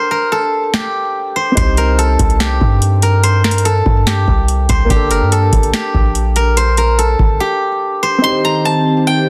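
A dense, heavily limited modern master set in a digital ambience frames this dark, menacing trap fragment, cut from a longer piece. In a half-time 4/4 feel at 144 BPM in G minor, a steel-string zither played with fingerpicks carries the melody up front, its silvery, ringing tone set against a dark grand piano whose mellow, intimate chords carry audible action noise and a vintage character. A booming analog drum machine enters at 0.7 seconds with a deep kick, crisp snare and metallic hats, tape-toned and forward, while a boomy 808-style bass with a sine core, a noise layer and a fast attack that decays joins at 1.6 seconds. The harmony moves between Gmadd9 and Cm, and the beat and bass drop out at 7.4 seconds. In the closing moments, a sweeping resonant pad of detuned sawtooth and triangle tones, wave-folded and treated with chorus and phaser, arrives on a slow attack over the final Cm.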